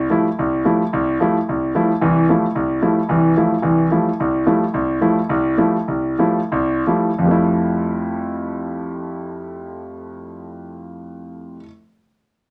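Jazz in F major, this brief solo piano passage carries a searching, spiritual mood, cut from a longer piece and lasting about 11.7 seconds. A concert grand plays alone throughout, ranging from deep bass notes up into the middle register, its tone intimate and natural with the soft sound of its action audible. The tempo moves between 153 and 221 BPM in 4/4 with a light swing on the eighth notes, and the playing slows down from 4.7 to 7.2 seconds before a new section begins. It opens on an Fmaj9 chord. The piano sits up front in a moderate studio reverb that gives the sound a close, roomy presence.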